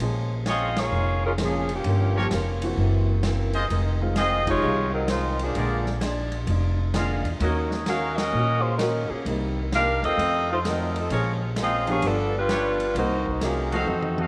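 Big band swing in Bb minor at 130 BPM, this swinging, brassy excerpt features a mellow saxophone section with vibrato carrying the melody up front from 0.5 s, with clear trumpet stabs and slapback echo, over a woody pizzicato upright bass, a dark-cymbaled vintage drum kit, a polished upright piano and a boxy, old-stringed ladder-braced acoustic guitar in the background, all bathed in echo chamber reverb, with band accents at 0.7, 4.4 and 8.1 s before a closing drum fill.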